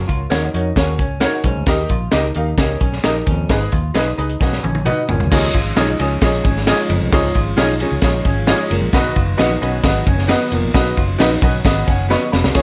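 Piano, baritone saxophone and bass open this danceable, uptempo 1960s-style soul excerpt at 132 BPM in Db mixolydian. A clear, woody, slightly detuned upright piano plays accompaniment, a breathy subtone baritone sax riffs in the background, and a round, foam-muted fingered bass punches underneath. Almost at once they are joined by a dark hollow-body jazz guitar riff, a saturated, gritty breakbeat kit with a high-tuned snare, and slightly broken-up electric guitar stabs carrying harmonic tremolo. The chords move from Gb through Eb and Abm to Cb, and a drum fill leads into a second section at 5.3 s, where a very quiet, percussive tonewheel organ adds sustained chords through a fast rotary speaker over Dbadd9. The upright piano fills from 11.7 s alongside a final drum fill, all in light reverb.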